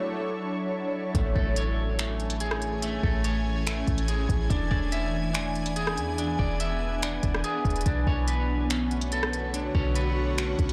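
Blissful and dreamy, this atmospheric cloud-rap piece in a half-time feel opens on an ethereal, detuned pad of sustained chords treated with chorus, phaser and sidechain pumping, alongside a very quiet electronic swell that gives way to an impact at 1.1 seconds. From there a twangy electric guitar at the edge of break-up plays filtered, delayed arpeggios, while a round, deep 808-style bass and a smooth R&B drum kit of finger snaps, hi-hat, soft kick and rim click join in, the drums overdriven with soft clipping on the snare. The recording as a whole sounds blown-out and overdriven, with light reverb.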